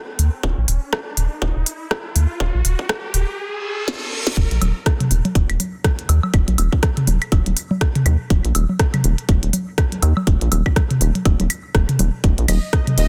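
A swung 4/4 pulse drives this hypnotic, sparse minimal techno excerpt, built on a rubbery, nasal square-wave bass with sidechain pumping and a tight, up-front layered kick, with clicky hats, ride, rim clicks and a tiny soft-clipped snare from a click kit. A riser and reverse cymbal build over the opening seconds, and a short drum fill leads into the drop at 4.4 seconds, where tape-warm electronic congas, woodblock and toms join. A bright, detuned, chorused gated texture pulses in at 12.5 seconds, all within a dry, dense, heavily limited master.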